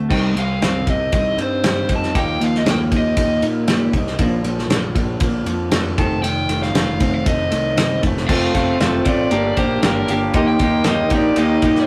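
Indie rock at 117 BPM with a bittersweet, cool mood, this rough rehearsal-room cut sets two picked, overdriven guitars, one hollow-bodied and one raw garage, on a riff over a punchy fuzz bass and an up-front, loose acoustic kit with dark cymbals, while a dark, compressed electric guitar carries the melody through chords from Cm to F7, before a mellow rubber-mallet glockenspiel enters softly in the background at 8.3 seconds and a very quiet, deep analog pad with chorus and phaser adds slow-attack sustained chords from 10.4 seconds.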